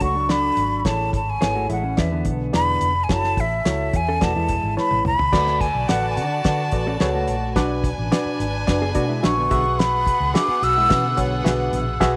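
Light reverb and a small-room ambience frame this short, uplifting cut from an uptempo 1960s-style soul track, moving at 108 BPM in a straight, danceable 4/4. Up front, a breathy, hollow metal jazz flute carries the melody with vibrato, a soft attack and tape echo. Beneath it, a barky, reedy electric piano plays a lightly overdriven accompaniment through its built-in speakers, while a mellow, clean, compressed electric guitar plays a fingered riff. The foundation comes from a vintage, foam-muted fingered bass with a round, amped tone and a cloth-damped, thuddy drum kit that is dry and smooth, with a fat snare, tight kick, dark cymbals and a rolled-off top. After a drum fill at 4.8 seconds, a clear, bowed studio violin section enters at 5.3 seconds with an even, ensemble second line, as the harmony shifts from Dmaj7 and Amaj7 toward D6, Bm and Eadd9.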